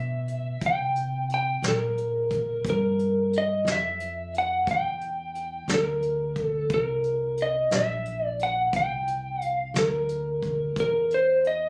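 Captured on a phone in a club-like room with light reverb, this soulful, gritty slow blues excerpt in 12/8 puts a slightly broken-up, compressed electric slide guitar up front, carrying the melody over a woody, thumpy pizzicato upright bass and a vintage brush drum kit with a punchy kick and a rolled-off top.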